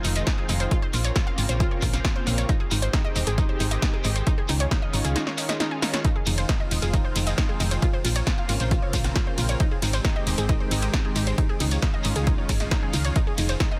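A driving 135 BPM pulse in straight 4/4 anchors this euphoric uplifting trance excerpt in F minor, with a punchy, tape-warm electronic kick sitting up front from 0.3 seconds alongside a punchy analog drum machine's hi-hat, ride and snare, a drum fill at 5.2 seconds, and a grainy, mellow shekere tucked in the background. A round, dark FM bass sits prominently beneath silky, string-like analog pad chords thickened by ensemble chorus, while a bright, detuned sawtooth pluck spins arpeggios through dub echo, the pad, pluck and bass all pumping against the kick. The harmony cycles Fm7, Bbmadd9, Abmaj7 and Dbadd9 under light reverb in a dense, heavily limited modern master.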